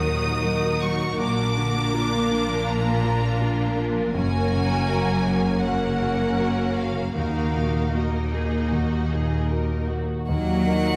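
Bittersweet and longing, this cut from a longer cinematic film score drifts in Eb minor at a rubato 79 BPM, with a smooth, vibrato-rich violin section singing the melody over a lush second violin line, focused violas, a deep-toned concert grand piano in the background, a faint ringing harp playing arpeggios, clear cellos and woody double basses on the bass, all bathed in a wet recital hall reverb, until at 10.3 seconds an intimate, airy solo violin and a mellow, distant French horn section holding sustained chords join in.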